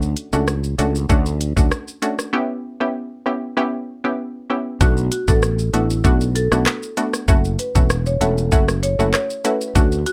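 An up-front electronic pop drum kit with a knocking kick, crisp hats, handclaps, rim clicks and shaker opens this bouncy, hypnotic dancehall excerpt at 97 BPM in B minor, joined from the start by a growly, direct fretless electric bass and a bright, detuned sawtooth analog pluck washed in chorus, with a break arriving at 2.3 seconds over chords moving from Dmaj7 to C#m7b5. At 4.8 seconds a woody marimba played with medium mallets takes up the melody, its tape echo trailing behind as the harmony shifts to Bm7 and F#m7. Light reverb gives the whole a snug, polished sheen.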